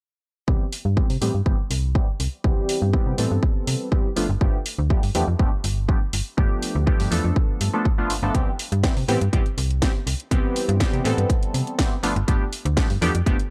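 A sunny, feel-good filtered disco house excerpt at 122 BPM in C major opens at 0.5 s with a punchy kick, a snappy FM slap-style bass with a metallic attack, and a bright, detuned sawtooth polysynth comp treated with chorus and phaser, the bass and comp both pumping under sidechain and run through a low-pass filter sweep across the whole cut. A house kit with a cracking snare and pumping hi-hats joins at 0.7 s, while the harmony alternates between Cmaj7 and G9. The dry, gritty sound carries transformer saturation and cassette tape character, with the tape-toned drums re-recorded in a small room.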